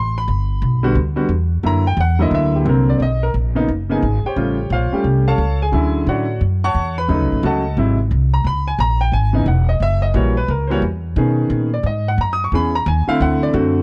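Playful and sophisticated, this small-group swing and bop clip moves at a brisk 176 BPM in 4/4 with a swung eighth-note feel, cut from a longer piece. A clear, open baby grand piano with long sustain supplies up-front accompaniment through extended, altered jazz harmony, while a woody, thumpy pizzicato upright bass on gut strings holds down the low end, equally close, from 0.0 to 13.8 seconds. The sound is dry and intimate, with little reverb and the close character of a 1970s studio session.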